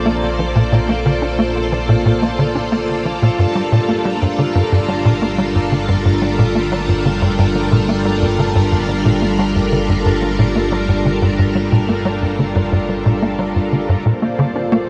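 Hypnotic and expansive, this ambient, sequencer-driven space music moves at 90 BPM in a straight 4/4 in G minor, heard as a fragment of a longer piece. A string machine full ensemble holds lush, vintage sustained chords from G3 to D5 throughout, its slow attack softened by ensemble chorus and shimmer reverb and sitting up front in the mix. Beneath it, a fat analog bass sustains thick, detuned, wave-folded tones low between G1 and Bb1, shaped by a filter sweep. A tight sequencer bass enters at 0.1 seconds with a punchy, driving riff from G2 to D4, its plucked filter and fast, decaying attack carried by ensemble chorus and tape echo. The harmony rests on Bbmaj7, moves to Gm7 at 3.4 seconds and returns to Bbmaj7 near the end, all bathed in a huge, wet ambient reverb with a long tail of 8.9 seconds.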